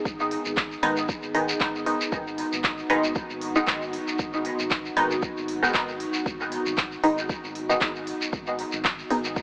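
Dub techno at 116 BPM in G# minor with a light 16th-note swing, this meditative, hypnotic excerpt sets a muted, filter-plucked dub chord stab, up front and drenched in chorus, phaser, dub echo and sidechain pumping, over a moody, wave-folded analog pad holding sustained chords with its own chorus and pumping, a round sine-and-sawtooth bass sitting in the background, a deep layered electronic kick, a deep house kit of handclaps and smooth hi-hats, and a grainy, close and dry shekere, all washed in a huge ambient reverb with a lo-fi AM radio tint.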